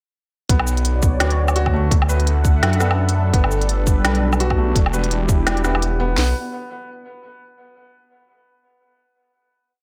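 Half-time drum and bass with a tense, spacious mood, this whole piece is a short drop from 0.5 seconds over Bmadd9, D, G and Em7, led by a swirling, thick phased detuned saw bass with tube saturation up front, a trap kit with hard-clipped kick, sharp snare and metallic hats, and a sparse organic electronic kit of woody snare, shaker and low woodblock re-recorded in a large room. A deep, moody analog pad with chorus and sidechain pumping holds sustained chords beneath a soft felt-muted upright piano repeating a 16-step arpeggio, its action noise audible through diffuse ambient delay. The drop ends at 6.2 seconds on a final Bmadd9 chord, the dreamy mix soaked in plate reverb.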